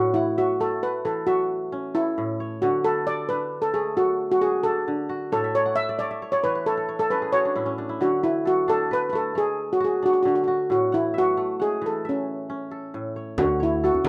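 West African traditional string and xylophone music with a hypnotic feel, moving at 89 BPM in a straight 12/8 in D lydian, where an up-front, shimmering steel pan played with soft rubber sticks carries the melody over ringing, fingerpicked kora arpeggios that break into a crisp fill from 5.3 to 8.0 seconds, while a bright, growly fingered electric bass and a deep, band-limited vintage djembe join only at 13.4 seconds, all set in light reverb with the rough sound of a home demo cut from a longer piece.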